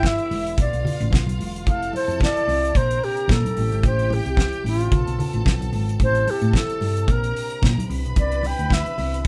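A driving 111 BPM disco groove in 4/4 with a light swing on the 16ths, set in A minor, has a damped 70s drum kit with a fat snare and tight kick up front, a dark, round hollow-body electric bass, and very quiet bright congas underpinning a reedy, airy alto flute melody with vibrato, while a lush, distant violin section carries a second line and a mellow French horn section holds sustained chords in the background over jazzy chords like Bm7b5 and Cmaj9, all in a small room with a short reverb in this danceable 9.3-second excerpt cut from a longer piece.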